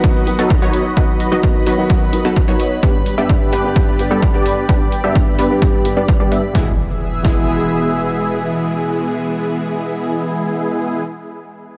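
From the first beat of this anthemic, euphoric festival progressive house track at 129 BPM, a punchy, detuned supersaw stab riff sits up front under a filter sweep and dub echo, joined by a dark, boxy concert grand piano and a lush, chorused and phased pad, the three pumping to the sidechain over B and G chords, while an overdriven kick and metallic hi-hats drive the groove until a background electronic impact arrives at 6.5 seconds as the harmony moves to E and the kick drops out at 7.4 seconds.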